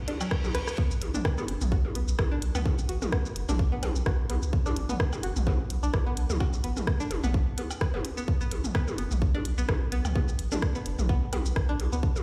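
Minimal techno at 128 BPM in B minor, cool and hypnotic, with a 16th-note swing; this cut from a longer piece opens with a short electronic reverse cymbal over the first 0.8 seconds and a drum fill at 0.5 seconds. A tight, up-front electronic kick and a deep, thick, saturated sub bass with sidechain pumping anchor the groove, while a tape-toned garage kit of hi-hat, rim click and shaker and delayed electronic toms and percussion blips, re-recorded in a small room, fill in the pattern. Over them a bright, twangy, string-like resonator pluck riff with a noise layer, filter sweep, moving notch, chorus, digital delay and sidechain pumping cycles through to 12.0 seconds, all set in light digital ambience and a big studio reverb.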